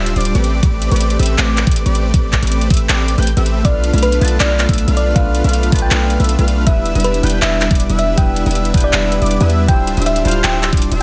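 Dreamy and emotional, this future bass excerpt moves with a half-time feel, cut from a longer piece and built on rich chords that shift from Am11 through Bm7b5 and Em7 to Dm11. From the start, a huge, thick supersaw riff with detuned unison voices and a sub octave pumps against the sidechain, while an airy, soft lead sits in the background spinning high arpeggios with chorus, vibrato and digital delay. A deep, boomy 808-style bass sits up front with a mellow, decaying tone, and a dubstep kit of handclaps and metallic hats joins almost at once, followed by a knocking, tape-warm electronic kick that hits hardest of all. At 3.6 seconds a round, warbling thumb-piano-like pluck takes up the melody with dub echo, alongside a bell-like, bright tine electric piano playing clean accompaniment. Light reverb gives the whole a soft sense of space.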